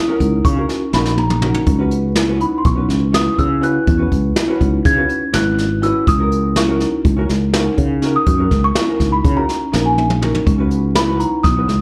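A bell-like, delicate celesta carries the solo melody through this driving, intricate progressive instrumental excerpt in 9/8, its slapback echo matched by woody marimba arpeggios and a dark, clean, double-tracked hollow-body jazz guitar, while a growly fretless electric bass with analog chorus sits up front beside a brush drum kit with a punchy kick that drops in fills at 0.9 and 9.7 seconds, all heard as a live gig through the venue's PA with moderate club reverb.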